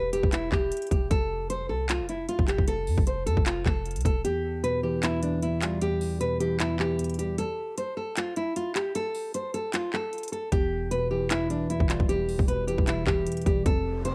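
A fingerpicked nylon-string guitar opens this menacing trap excerpt, carrying the melody in E phrygian with a warm, classical depth, joined at once by a deep, boomy 808-style bass built on a clean sine tone. A trap drum kit enters at 0.1 seconds with a hard-clipped kick, metallic hi-hats and handclaps, sitting up front at a half-time feel over 153 BPM. The harmony moves from Em to F, and at 4.2 seconds the bass drops out for a break while soft, round electric-piano-like synth keys take up the accompaniment, their detuned, wave-folded tone shaded by chorus and a filter sweep. Around 7.4 seconds the chords fall away, then the bass and mellow keys return together at 10.5 seconds on Em. A faint electronic riser slips in under the final moment, and a cassette-tape grain on the guitar, drums and keys gives this hard-hitting home recording a worn, lo-fi haze.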